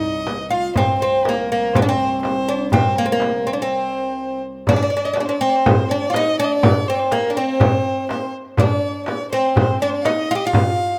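Arabic maqam ensemble music with a hypnotic, longing mood, led by an up-front, bright, woody fretless oud plucked with a plectrum, with a second line from a single clear bowed violin with smooth vibrato over a reedy gut-string cello section drone that holds until 4.7 s, while a crisp, deep metal-shell darbuka sits in the background alongside a small frame drum played with soft hands, captured as a rough home demo with light small-room reverb and a stop at 3.7 s.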